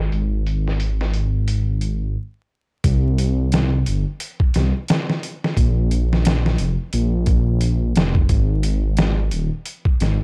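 Smoky and brooding, this swung trip hop fragment pairs a deep, rumbling detuned saw bass with a gritty, pitched-down sampler-style drum kit of thumpy kick, hi-hat and snare, both up front in a dry, crackling vinyl-tinged recording, with a filter sweep over the opening 2.8 seconds and a brief stop at 2.2 seconds before the groove carries on.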